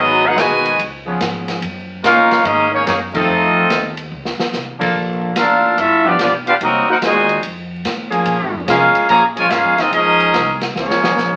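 Big band swing in Bb minor at 145 BPM, this dramatic, swinging passage is cut from a longer piece and heard through the crackle of a very old 78 rpm record. A trumpet section with light vibrato and a soft attack carries the melody up front, while a trombone section beneath it plays a second line with the same gentle vibrato. From 1.1 seconds a clear, forward trombone section adds sustained chords, moving through changes such as Gb69, F7 and Bbmaj7 before settling on Bbm7. An upright bass, pizzicato and woody with a thumpy tone, sits low in the mix, and a polished, airy drum kit with a punchy kick and ride, hi-hat and crash cymbals swings underneath from 0.4 seconds. The full band hits an accent at 3.1 seconds, drum fills arrive around 4.1 and 10.8 seconds, and a wet studio reverb surrounds the ensemble.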